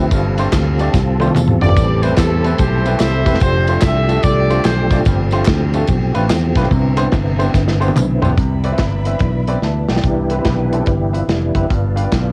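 A swung, uptempo gospel groove in 4/4 drives this short excerpt cut from a longer piece, with a reverent, uplifting mood and the character of a home cassette recording in a light reverb. Up front, a punchy fingered electric bass with tube saturation and an acoustic studio drum kit with a medium-tuned snare and rolled-off top carry the pulse, while a tube shaker and group handclaps sit in the background until 8.3 seconds. A clear baby grand piano with long sustain supplies accompaniment, and a tonewheel organ holds sustained chords through a slow rotary speaker and chorus vibrato, moving through rich sus, ninth and six-nine harmonies. A tight, distant horn section with light vibrato and tape echo states the melody from 1.6 to 5.0 seconds, and a lush bowed string section with portamento adds sustained chords from 8.4 to 10.0 seconds. Drum fills mark the turns, and from 10.0 seconds the organ takes a solo over major-seventh and dominant chords to the close.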